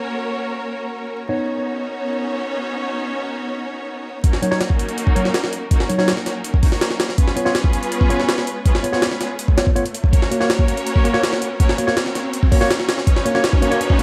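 A straight 4/4 pulse at 163 BPM drives this atmospheric, frenetic drum and bass and jungle piece in Eb minor, where a worn, slightly out-of-tune tine electric piano with 12-bit sampler grit and dub echo plays stabs through a filter sweep over lush, low-pass-filtered bowed strings and an airy, wind-like noise layer until 4.2 seconds, when an overdriven, pitched-up jungle drum kit with a thumpy kick and high-tuned snare arrives up front, joined at 5.0 seconds by a very quiet electronic riser as the build-up unfolds amid light digital ambience and vinyl crackle.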